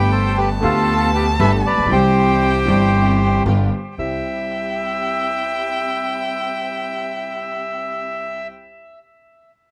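A reedy, vintage-toned bandoneon leads this nostalgic, elegant tango excerpt up front, carrying the melody, while a close, expressive solo violin adds a second line high above it with vibrato, portamento and a soft attack. Underneath, a polished grand piano with long sustain supplies the accompaniment, and a lush studio string section sits in the background, adding smooth-topped bowed stabs. A woody, thumpy pizzicato upright bass anchors the low end until it drops out at 4.2 seconds, and the rest of the ensemble carries on to the close at 8.5 seconds. The music moves at 117 BPM in 4/4 with a rubato, elastic feel, settling in C major as the harmony passes from Gadd9 through C and G7 back to C. Close, detailed microphones and light reverb give the recording an intimate, present sound.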